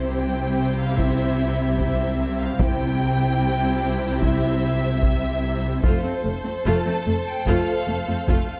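Moderate scoring-stage reverb and a dark, warm production frame this relentless, dark epic orchestral film cue, cut from a longer piece, where lush bowed violins carry a focused vibrato melody over a second violin line, smooth violas accompany while even cellos and expressive double basses hold down a rich bass, a distant, tight French horn section sustains chords in the background, and a close, dry taiko ensemble struck with hard sticks joins at 1.0 s as the harmony moves from C to F at 5.8 s.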